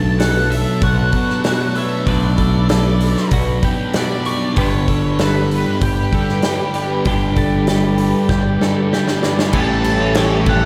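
Hazy and dreamy, this short cut of shoegaze-tinged dream pop rock moves at a straight 96 BPM in G lydian, drifting from Bm7 to G and then to A7 at 9.5 seconds. A dark, octave-fuzz lead guitar carries the melody with slapback echo over a sweeping, detuned sawtooth pad treated with chorus and phaser, while a compressed twelve-string electric guitar arpeggiates and a hollow-body semi-hollow guitar plays a riff through reverse reverb, both sitting in the background. A thick fuzz guitar with lush chorus plays a low riff beside a growling, overdriven picked bass, a huge, punchy arena drum kit sits up front and plays a fill from 8.3 seconds, and a bright, double-tracked crunchy guitar joins for the closing moments.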